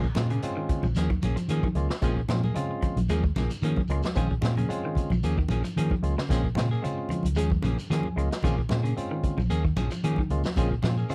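A lightly swung sixteenth-note groove at 112 BPM drives this hypnotic, funky afrobeat excerpt in Bb minor, rocking between Bbm7 and Eb9sus4. Up front, a round, dark fingered bass and a punchy vintage drum kit with a rolled-off top and medium-tuned snare carry the pulse, while thick-skinned congas played with hard hands and a grainy, distant shekere sit in the background. A clean electric guitar plays phaser-tinted arpeggios low in the mix, a hollow-body semi-hollow guitar adds picked stabs, and a bright, barky tine electric piano comps and slips in a short fill at 7.6 seconds, set in a dry, close 1970s-style studio sound.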